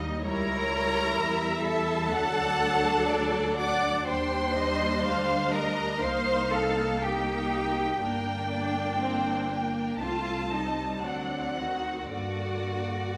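A warm, even second violin line opens this elegiac, melancholic slow romantic passage for string orchestra, with focused violas and smooth-topped double basses sounding beneath it from the start. A lush, expressive first violin melody with a soft attack enters at 0.2 seconds, and rich, close cellos with vibrato join at 0.3 seconds, the music moving in free rubato through shifting harmonies in G minor before arriving on a G minor chord at 12.1 seconds. The ensemble sits in a generous scoring-stage reverb that gives the bowed tone a spacious glow.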